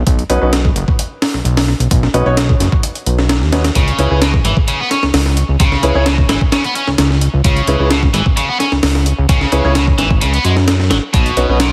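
A heavily compressed, radio-ready sound with light digital ambience frames this energetic, funky breakbeat cut, taken from a longer piece and running at 130 BPM in 4/4 with a straight feel in C# minor, tuned to A4 = 438 Hz. A gritty, sampler-style breakbeat kit sits up front with a thumpy kick, a high-tuned snare and hi-hat, sounding pitched up and tape-tinged inside a small room reverb. Beneath it, a fat analog bass blends sawtooth and triangle tones, detuned and wave-folded, with a fast attack, sustained notes and a filter sweep, holding the low end from F#1 to F#2. A clear concert grand piano with deep bass plays stabs through digital delay, set a little further back than the other parts. At 3.8 seconds a biting, overdriven electric guitar enters with a bright, picked, double-tracked riff, also sent through digital delay, as the harmony moves from Badd9 to C#m7 before returning to Badd9 near the close.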